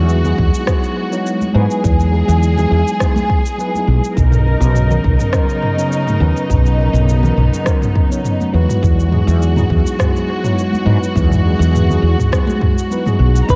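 A mellow tine electric piano with tape echo, a bowed studio string section played sul tasto with vibrato, and a woody, growly fretless bass open together, moving between Emaj9 and Bmaj9 chords in this sunny, sunset chillout excerpt. The round, dark bass with ensemble chorus sits up front and loudest among the parts, while the intimate, smooth-topped strings hold sustained chords alongside the clean piano accompaniment. A deep house drum kit of rim click, shaker and toms and soft-handed, high-tuned congas arrive almost at once, followed at 0.4 s by a deep, layered electronic kick that settles into a gently swung 4/4 groove. Moderate spring reverb and plenty of echo give the mix a hazy, relaxed glow. At 13.5 s, just as the fragment ends, a fingered semi-hollow electric guitar sounds a single B4 with a warbly pitch drift.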